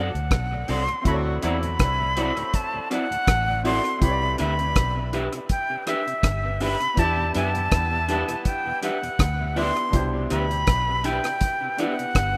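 Tender and smooth, this lovers rock reggae excerpt opens with an airy, expressive jazz flute carrying the melody up front, its vibrato and soft attack trailed by tape echo, over a clear grand piano sitting in the background with dub echo and a very quiet, mellow tonewheel organ turning on a slow rotary speaker. A twangy, slightly broken-up electric guitar through a small old amp adds picked, lo-fi stabs that ring out in dub echo. Underneath, a dark, round, foam-muted fingered bass punches up front alongside a dry, deep reggae drum kit whose tight kick, hi-hat and rim click come in at 0.2 seconds, with dub echo on the drums. A distant horn section with light vibrato and octave doubling joins at 1.1 seconds as a roomy second line in the background, dropping out at 8.8 seconds as the harmony drifts from dominant colors to Cmaj9 and Em7. The rough home demo mix keeps a light reverb and small room ambience around the band, giving the piece a tender, smooth feel.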